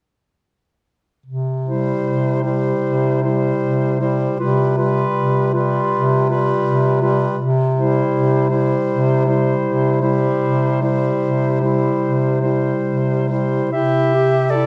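In a rubato 4/4 pulse drifting between 66 and 82 BPM, this serene, tender classical piece for single-reed quartet in C major, cut from a longer work, opens on a C chord. A clear, soft-attacked bass clarinet enters up front at 1.3 s, joined from 1.6 s by a mellow, smooth-topped soprano saxophone carrying the melody with vibrato and a tenor saxophone with vibrato in accompaniment, while a warm clarinet adds a second line from 1.7 s. A wet scoring-stage reverb surrounds the ensemble.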